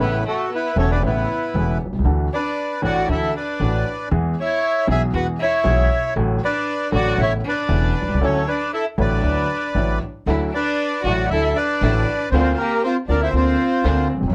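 Tango with a nostalgic, elegant mood, heard in a short cut from a longer piece, with a rubato feel and a dark production in a modest club-sized reverb. The bandoneon carries the melody up front, its tone reedy, full and dry, close-miked so it feels near. A bowed violin plays a second line beneath it with vibrato, portamento and a soft attack, expressive and singular. A grand piano accompanies with an intimate, natural sound in which the action noise is audible, while a pizzicato upright bass on steel strings gives a woody, growly foundation. At 10.3 seconds a studio string ensemble enters in the background with smooth, sul tasto stabs, and the harmony later turns to Bbadd9 over D at 12.3 seconds.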